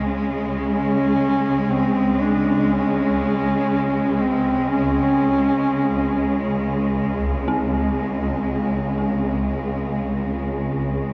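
Cavernous and dark, this fragment of free-time ambient drone music sets a mellow solo duduk, full of vibrato and scooped notes and trailed by tape echo, over expressive bowed cello section chords up front until the duduk stops at 6.7 seconds, while an eerie, warbling, inharmonic FM synth bell plays arpeggios with chorus and tape echo in the background and fades in alongside a swarming, granular, detuned sine drone, all held in a huge, wet reverb with a 7.8-second tail.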